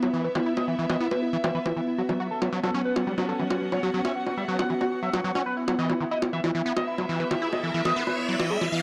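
A gritty, guitar-like overdriven synth lead screams out a melody from the first moment, riding over a squelchy, aggressive acid line whose resonant filter sweeps through the whole 8.8-second excerpt in this intense psychedelic trance passage at 138 BPM in straight 4/4. Beneath them, an evolving wavetable pad morphs on a sustained B3 chord in the background, and a dark chamber string section adds an intimate, bowed texture, played sul tasto with light vibrato. Electronic, layered bongos drive the rhythm, muffled by low-pass filtering and heard in a small room. A very quiet, nasal vowel-sweep wobble bass slips in as a second line from 2.1 to 4.9 seconds, while an electronic riser climbs in the background from 6.6 seconds to the end. The lead carries chorus, phaser and delay, the acid line runs through distortion and tape echo, and the harmony moves from E5 to F#5 and back to E5 under a light reverb.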